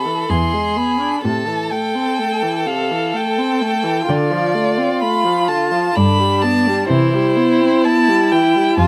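A dark, up-front first violin carries the elegiac, yearning melody with vibrato, soft attacks and expressive portamento, while a second violin adds a warm second line beneath it. A woody viola supplies the accompaniment and a rich, even cello enters on the bass at 0.3 s, all bowed by single players. This slow romantic string quartet passage in A minor moves in a rubato 3/4 at 64 BPM, passing from E7 through Am, Dm7 and G to Cmaj7, framed by moderate studio reverb.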